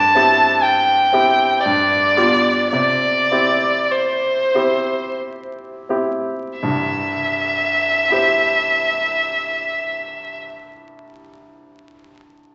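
Heard through the crackle and dulled top of a very old 78 rpm record and the wet bloom of a recital hall, this lyrical, romantic classical fragment in 3/4 and C major moves with rubato between 40 and 64 BPM, slowing through its first 6.6 seconds as an up-front, clear, focused violin sings the melody with vibrato over bright, brilliant grand piano accompaniment passing from C/G to G7 to C, the piano carrying on alone after the violin stops at 10.4 seconds until 12.5 seconds.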